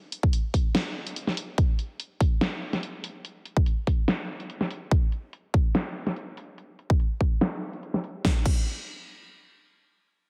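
This dubstep excerpt opens with a big-room dance drum kit at 0.1 seconds, its crash cymbal, hi-hat and snare drum all run through a low-pass filter, with an electronic kick drum joining at 0.2 seconds. The feel is half-time in 4/4, and the mood is aggressive and chaotic. The kit is layered and produced, built around a huge snare that sits up front, while the punchy, layered kick is also placed prominently forward. A filter sweep moves over the drums through the opening section until 8.2 seconds, when a brief second section begins. The mix carries a light reverb and a heavily compressed, radio-like sound shaped by multiband compression, with both drum parts stopping at 8.5 seconds.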